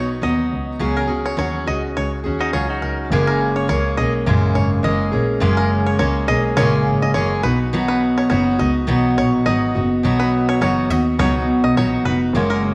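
Set in a moderate echo-chamber reverb with a small-room feel, this sunny, easy-going acoustic pop excerpt moves with a light swing on its sixteenth notes in 4/4. A full-bodied jumbo steel-string acoustic guitar sits up front, picked as accompaniment throughout, with finger squeak audible on the strings. A twangy, percussive banjo played with fingerpicks adds high arpeggios above it. Underneath, a single bowed double bass plays the bass part with a boxy, focused tone and vibrato. A bright, compressed clean electric guitar, recorded direct, adds a short picked second line between 2.4 and 3.1 s. The harmony moves from B to C#sus4, then settles on F#add9 at 3.1 s before returning to B.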